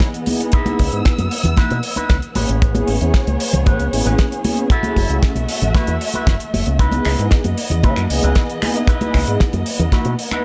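Nu-disco at 115 BPM in C# minor, groovy and sensual, built on a tight, up-front kick and a damped 70s kit with a fat snare, finger snaps and hi-hat, joined at 0.3 seconds by bright, high-tuned congas and at 0.8 seconds by a direct, up-front fingered bass through an envelope filter and tube saturation. A twangy, clean electric guitar riff runs through an envelope filter with subtle chorus and tape echo, while mellow, detuned sawtooth synth brass with phaser, chorus and tape echo pumps against the kick alongside a dark, lush violin section holding bowed chords with vibrato and portamento. The harmony moves from a rootless C#m9 through Amaj9 and F#m7 back to C#m9 in this short excerpt cut from a longer piece.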